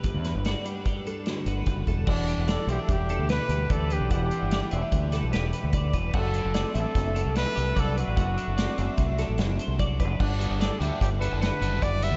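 A dreamy mix soaked in huge ambient reverb, its highs softened, carries this playful, bright excerpt of math rock and midwest emo in 5/4. Two twangy, clean twelve-string electric guitars with analog chorus open together, one playing accompaniment and the other arpeggios through a diffuse ambient delay. Beneath them sit an up-front overdriven fingered bass and a distant, roomy indie drum kit with dark cymbals. At 2.1 seconds a breathy, whispered trumpet enters with an intimate melody touched by light vibrato and delay, and at 10.4 seconds a biting, double-tracked overdriven guitar adds a riff.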